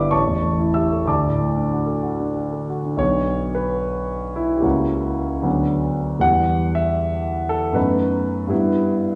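Romantic classical character piece for solo grand piano, lyrical and hopeful, unfolding in a flowing 6/8 with free rubato, its warm, present tone and long sustain sitting up front within a reverberant recital hall, as this short excerpt moves into a second section at 3.0 seconds.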